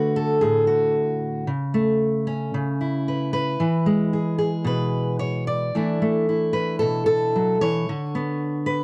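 A fingerpicked steel-string acoustic guitar opens on a D chord and carries this short folk piece alone from 0.0 to 8.8 seconds. The mood is nostalgic and peaceful, moving at a straight 113 BPM in 4/4. The guitar has a dark, auditorium-bodied tone, sits up front in the mix and spans from A2 to D5. The harmony moves through Aadd9/C#, E and E7sus4 before arriving at Bm/D near 7.9 seconds. Light reverb and a dark, warm production frame the single instrument in this fragment cut from a longer piece.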